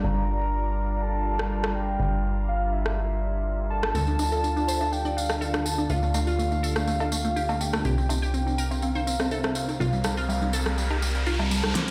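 Progressive house at 123 BPM with a driving, bittersweet mood, this excerpt opens on a downlifter as a round, chorused synth lead with a sub octave sings over a dark, morphing wavetable pad and a punchy, up-front analog bass through Gm7, Dm and C7sus4. A big-room drum kit with a huge snare and overdriven metallic hats arrives at 1.4 s, followed by a crystalline, tape-echoed wavetable pluck arpeggio at 3.9 s, a jingly tambourine, and background cowbell, congas and bongos, until a riser from 9.7 s leads into a drum fill in a large, reverberant room.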